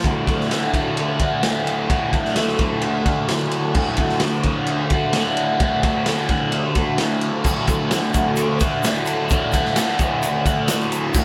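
Garage rock with a raw, rowdy edge, this short cut from a longer piece has the feel of a small band playing live together in one room, with a moderate studio reverb around it. A crunchy, overdriven electric guitar carries the riff from the start, picked and double-tracked up front, its tone given a phaser sheen and sitting on a D chord throughout. The acoustic drum kit is saturated and gritty, with a boomy kick, a medium-tuned snare, dark crash and ride cymbals, a rolled-off top, and a small, pumping room sound. At 7.5 seconds an egg shaker slips in at the back, grainy, bright and compressed, adding a thin layer of texture until the clip ends at 11.2 seconds. The overall effect is scrappy and immediate, like a rehearsal captured mid-song.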